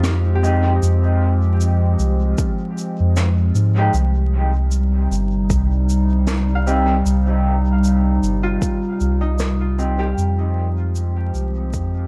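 Vinyl crackle and small-room ambience frame this hazy, meditative ambient dub excerpt in C minor at 77 BPM with a swung 16th feel, where a warbling, detuned tape-like pad holds dark sustained chords with chorus and reverb over a round, up-front sub bass with tube saturation, a fingerpicked Celtic harp rings out arpeggios through dub echo, a clean electric guitar adds stabs with lush chorus and dub echo from 0.4 s, a distant brushed snare and shaker sit in dub echo, and a deep electronic kick enters at 2.4 s before the fade-out from 8.1 s.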